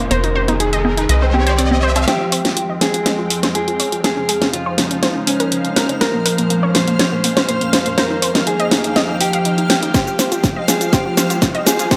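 A clean, dark fingered electric guitar melody with tape echo opens this bittersweet, emotional progressive house excerpt in F minor at 122 BPM, over an evolving, chorused wavetable pad, a lush detuned unison pluck arpeggio, a tight sawtooth sequencer bass, overdriven background congas and cowbell, a riser and an up-front house kit with a cracking snare, before bass and hand percussion drop out at 2.1 seconds for a build-up where a dreamy reversed granular texture enters at 3.3 seconds and a punchy, tape-warm electronic kick arrives at 9.9 seconds, all set in a lush hall reverb.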